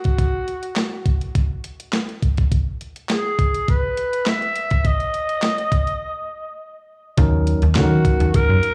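Late-night and funky, this early-eighties boogie funk fragment at 103 BPM in Eb phrygian opens with a growling, raspy alto saxophone melody with slapback echo over a thumpy, overdriven 12-bit drum machine of kick, snare, hi-hat and handclaps, and after a break from 6.0 seconds, a snappy, metallic FM bass and a barky tine electric piano enter at 7.2 seconds on an Ebm7 chord, all heard live through a club PA.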